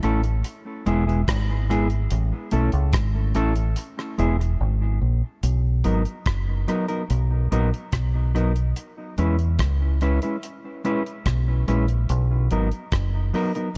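Opening together at a laid-back 72 BPM in B major, a clean, fingered electric guitar with tape echo, a deep, round fingered dub bass sitting up front, and a damped, dry 70s drum kit with a tight kick, hi-hat and rim click, also treated with tape echo, carry this uplifting roots reggae passage through E and A chords before the drums drop out from 4.6 to 5.4 seconds, as the harmony shifts to a Bmaj7 and E6 groove in a lightly reverberant, echo-heavy mix.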